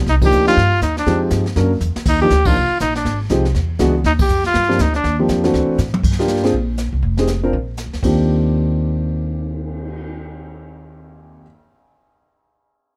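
Under light reverb, this swinging, sophisticated small-group jazz fragment pairs a smooth-topped trumpet, singing with vibrato and scooped notes until 5.2 seconds, with a woody pizzicato upright bass, an intimate vintage grand piano with audible action noise, and a brushed drum kit with dark cymbals and a boomy kick, as band accents and drum fills punctuate rich extended chords.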